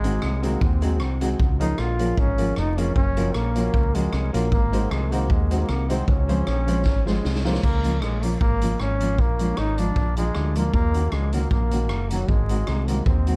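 Upbeat and cheerful, this swinging ska excerpt puts a clear, smooth-topped trombone with vibrato on the melody, bathed in dub echo, over a round, direct fingered electric bass and a punchy, roomy big-band drum kit of kick, rim click, snare, hi-hat and crash. A mellow electric guitar with tremolo and dub echo sits in the background, joined by woody upright piano stabs that drop out at 7.6 seconds, just after a drum fill from 6.9 seconds. Light reverb and vinyl crackle give the production a dark, warm glow as the chords cycle through sevenths and sixths.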